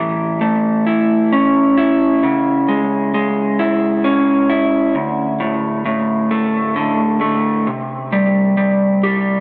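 Soaring and hopeful, this short rock excerpt moves in a slow 6/8 at 44 beats per minute, carried entirely by a lone electric guitar played through a small old amp. The picked guitar sits up front with a slightly broken-up, compressed, lo-fi tone and a slapback echo, ranging from D2 to G4 as it moves through A, C#m, D5 and finally C5 at 7.7 seconds. A huge ambient reverb with a seven-second tail surrounds the playing, giving the lone instrument a vast, open space.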